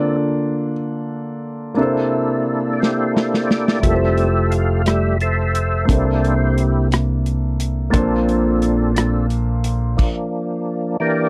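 This dry, close recording has the intimate feel of a 1970s studio, with little reverb around any of the players. It is a short cut from a slow, reverent and uplifting gospel piece in a straight 6/8. A percussive tonewheel organ takes the solo throughout. Its lightly overdriven tone carries a second-harmonic percussion attack, chorus vibrato and a slow rotary speaker over full, sustained chords. A grand piano sits close beside it with natural long sustain and audible action noise, moving through rich chords such as Bbmaj7/D, C13 and Fmaj9. The acoustic drum kit, dark and smooth with a tight kick and a medium-tuned snare, comes in with a fill at 2.8 seconds, and a round, punchy fingered electric bass joins at 3.8 seconds to anchor the low end.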